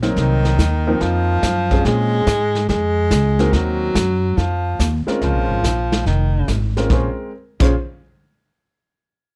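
A smooth vintage grand piano, a woody, growly pizzicato upright bass and a brushed drum kit with a punchy kick and dark cymbals open this late-night small-group swing and bop piece at 142 BPM in Bb minor, joined at 0.2 seconds by a breathy, mellow baritone saxophone playing in subtone with vibrato and scooped notes over a repeating Cm7b5, F7sus4, Bbm7 progression, set in light reverb within a dark production.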